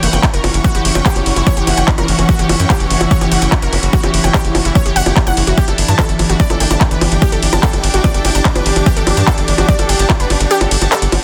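A dense, heavily limited mix with light digital ambience carries this hypnotic psychedelic trance excerpt, where a punchy, up-front kick drives until it drops out at 10.5 s over a tight sawtooth sequencer bass and a metallic techno kit of hi-hat, ride, handclaps and bongos, while a bright, detuned unison pluck riff with dub echo and a morphing wavetable pad with chorus and phaser pump against the kick alongside a lush, bowed string section, and a very quiet formant-filtered wobble bass surfaces briefly at 0.0 and 6.6 s.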